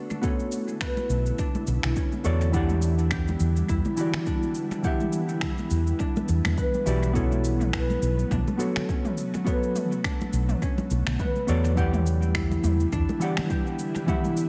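An echo-heavy, roomy mix opens this short, relaxed and wistful sunset chillout cut, where a dark, clean hollow-body jazz guitar comps through tape echo beside a ringing, fingerpicked concert harp playing arpeggios and an ethereal, warbling pad holding detuned, airy chords with ensemble chorus in the background. Underneath, a deep, tape-warm electronic kick and an overdriven deep house kit of cabasa, finger snaps and toms ride a lightly swung groove, joined by damped, high-tuned congas played with soft hands at the back. A round, amped hollow-body electric bass sits up front from 1.1 to 13.0 seconds as the harmony moves between Bm9 and Em7.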